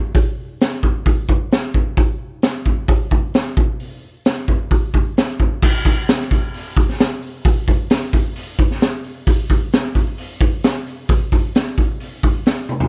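A raw garage drum kit sits up front in this heavy, gritty rock excerpt, its punchy kick and high-tuned snare joined by hi-hat, crash cymbal and toms in a straight 4/4 at 132 BPM. The acoustic kit sounds saturated and pumping in a small room with a rolled-off top and little reverb. It plays from 0.1 seconds, moves into a second section at 5.6 seconds and closes with a drum fill at 12.7 seconds.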